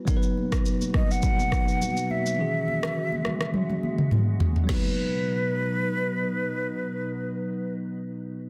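Romantic and joyful, this short afrobeats fragment, cut from a longer piece, moves with a gentle swung lilt. A bright, bell-like tine electric piano carries the accompaniment throughout, joined by a glassy FM pad whose slow-attack chords float with ensemble chorus and an ethereal built-in reverb. An electronic afro-pop kit sits up front with a deep kick, a woody snare, rim clicks, shaker, toms and a crash, all overdriven and re-recorded in a small room, while high-tuned congas played with soft hands sound distant in the background. From 1.0 s a breathy, hollow jazz flute takes the melody, its tongued notes and vibrato colored by tape echo. A drum fill from 3.5 s leads into a second section, after which the kit and congas fall away by 5.0 s, leaving the flute, pad and electric piano over a dense, heavily limited modern master.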